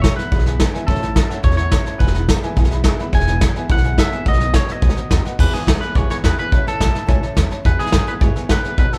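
From the first beat, a rollicking, retro rockabilly band plays live in one room at 213 BPM in E major, with a clean, twangy electric guitar carrying the melody through spring reverb over up-front brushed drums with a punchy kick and rolled-off top, a woody pizzicato upright bass, and a bright jumbo steel-string acoustic guitar and dark, mellow vintage upright piano filling in the background over E, A and B7 changes in this excerpt cut from a longer piece.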